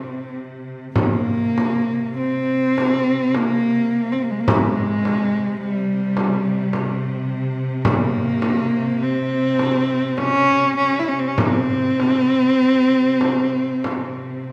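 The recording opens in a resonant recital hall, its reverb hanging for about 1.7 seconds and lending the sound the spacious air of a church or concert hall. This short Caucasian folk lament, cut from a longer piece, moves at a slow 52 BPM in 3/4, with uneven beats and a free, rubato feel that gives it a solemn, longing mood. A single bowed cello carries the melody from the first moment, dark and expressive with vibrato, a soft attack, gliding portamento and a smooth top, placed up front between G3 and E4. Beneath it, a bowed string section holds a drone on C3 throughout, clear, intense and lush with its own vibrato, sitting much lower in the balance. A small, bright acoustic frame drum joins at 1.0 seconds and plays until 14.1 seconds, sounding distant in a large room yet still up front.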